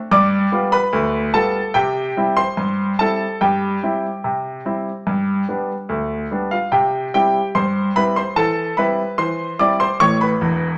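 A clear grand piano opens at 0.1 seconds on a G7 chord, playing solo in a cheerful, lively ragtime style at 73 BPM in 2/4 with a straight feel. Set in C major and tuned slightly sharp to A4 = 441 Hz, the instrument spans a broad range from E1 up to D6. Its tone is clear and worn, with a natural character and short sustain, and it sits up front in the mix. The harmony moves from G7 through C, C/G, G, C and C/E before landing on A at 10.0 seconds. A moderate reverb suggesting a large studio surrounds the piano with a 1.1-second decay, adding a sense of space to this brief cut from a longer piece.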